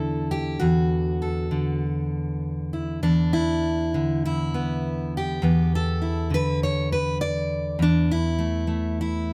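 This folk fragment moves at a steady 101 BPM in 4/4 with a straight feel, and it is cut from a longer piece, running just over nine seconds. A single fingerpicked steel-string acoustic guitar carries it alone, a jumbo-bodied instrument with a bright, full-bodied tone that sits up front, spanning from E2 to D5. The harmony shifts from Dadd9/E to G6/E at 3.0 seconds, then to A5/E at 7.8 seconds, all resting over a low E that lends the passage a haunting, unresolved quality. Finger squeak on the strings is audible, adding to the intimate character captured by close, detailed microphones. A light reverb gives the guitar a touch of space while keeping it near and personal. The tuning sits slightly below standard, at A4 = 439 Hz.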